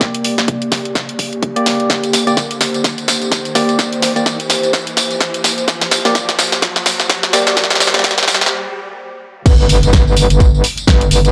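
A moderate digital room gives this gritty, swaggering bass house fragment its sheen, with a punchy electronic kick and an up-front house kit of punchy snare, bright hi-hats, tambourine and crash cymbal driving a swung groove. Underneath, a deep, moody analog pad holds sustained chords built from detuned square and sawtooth tones with a sub octave, its slow attack and long release softened by chorus and phaser and ducked by sidechain pumping. A hollow, organ-like percussive stab, full-bodied and wave-folded with a noise layer, adds dark chorused hits trailing dub echo until 8.2 seconds. The passage is a build-up with a drum fill and an electronic riser that give way to a brief break at 8.5 seconds. At 9.5 seconds the drop lands with an impact and a metallic, aggressive FM wobble bass, saturated, compressed and pumping, thrust to the front on a low G.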